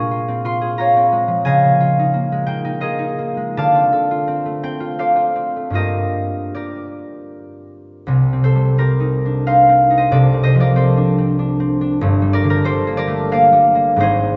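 A concert harp plays alone, ringing and up front, in this gentle, wistful classical excerpt cut from a longer piece, moving in a rubato 3/4 that drifts between 75 and 96 BPM across a range from G1 to Db6. Its fingerpicked, acoustic tone sits in a wet church reverb with a 2.5-second decay, and the sound is dark, holding nothing above 7.7 kHz. Rich chords such as Bbm9 and Db69 open the passage before it settles into a second section at 8.1 seconds built on Cm7, Dm7/C and Gm7.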